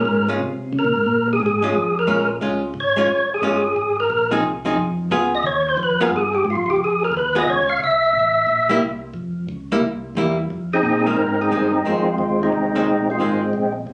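Captured on a phone in a reverberant club, this soulful, late-night soul jazz organ trio excerpt, cut from a longer piece, swings as a fat, lightly overdriven tonewheel organ with percussive third-harmonic attack, key click, chorus vibrato and a slow rotary speaker sits up front and takes a solo from 0.0 to 10.5 seconds over a dark, clean, compressed hollow-body archtop guitar comping beside it and a mellow, round organ bass line, also turning through a slow rotary speaker, moving through minor-seventh and dominant changes.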